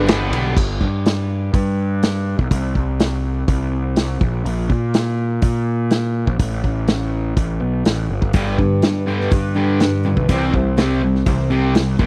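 A dry, close recording with a 1970s studio feel opens this swaggering, confident classic rock excerpt, which moves at 123 BPM in a straight 4/4. A fuzzy, overdriven electric bass runs from start to finish, its punchy, amped tone sitting up front. The vintage drum kit joins at 0.1 seconds with a tight kick, medium-tuned snare, hi-hat, ride and crash, its dark cymbals and rolled-off top giving the kit a mid-forward weight. A bright, distorted electric guitar, double-tracked and compressed, plays its riff on a G chord at the very start, drops out while the chords give way, then returns at 8.3 seconds as the harmony moves from G to C. Behind it, a picked twelve-string acoustic guitar adds a shimmering, octave-doubled, full-bodied jingle in the background during those same two passages.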